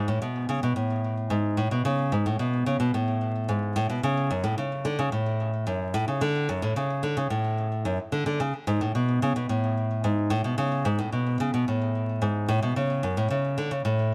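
Folktronica in a pastoral, delicate mood, this 14.1-second excerpt of a longer piece features a lone nylon-string guitar, bright, classical and fingerpicked, sitting up front in a low register with a touch of delay, all set in light reverb beneath a layer of vinyl crackle.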